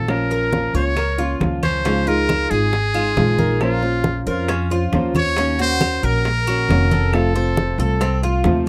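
Danceable and nostalgic, this short excerpt from a longer piece is Cuban son with a guajira lilt, moving at 136 BPM in a straight 4/4 in B-flat minor. A muted trumpet carries the melody up front, its metal mute giving a buzzy, breathy, jazz-inflected tone with a soft attack. Also up front, a pizzicato upright bass with steel strings sounds dark and woody, while a fingerpicked nylon-string guitar adds classical accompaniment and a Cuban tres, entering at 0.3 seconds, weaves picked arpeggios with a metallic shimmer from its doubled strings. The percussion sits further back: thin-skinned congas that are close and dry, round, compressed and saturated bongos struck with hard hands, and very quiet claves heard at a distance in a large room. The harmony moves from Bbm through Dbadd9, Bbmadd9 and Ebm7 to F, with the second section starting at 1.9 seconds, all wrapped in a dark production with light reverb.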